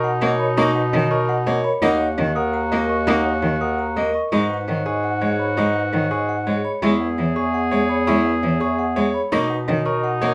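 A meditative yet urgent minimalist classical pattern piece in 7/8, cut from a longer work, opens with a metallic, ringing vibraphone melody with fast motor vibrato, a distant, roomy oboe second line, brilliant baby grand piano arpeggios with audible action noise and long sustain, delicate bell-like celesta arpeggios struck by hard felt hammers, and a present, up-front solo bass clarinet bass, before a smooth, bowed cello with clear vibrato joins at 0.2 seconds, the close, detailed sound framed in light reverb as the harmony moves from Bmaj7 through D#m, G#m7 and Eadd9 back to Bmaj7.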